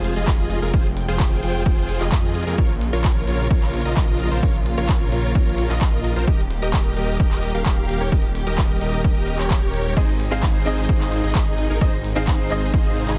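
A dense, heavily limited modern master with digital ambience frames this triumphant, anthemic slice of festival progressive house in Ab major, moving at 130 BPM in a straight 4/4. A huge, thick supersaw riff drives the track, carrying sidechain pumping and dub echo. Underneath, a detuned saw bass adds a lush, chorused low end with tube saturation, and a dark, woody string section sustains bowed chords in the background, also pumping with the sidechain. A punchy electronic kick sits up front from 0.3 s, while the big-room dance kit adds crisp hats, handclaps and crash cymbal. The harmony moves from Fm through Bbm and Eb, and at 10.0 s, as it settles on Ab, a bright baby grand piano joins with short-sustain accompaniment, echoing and pumping.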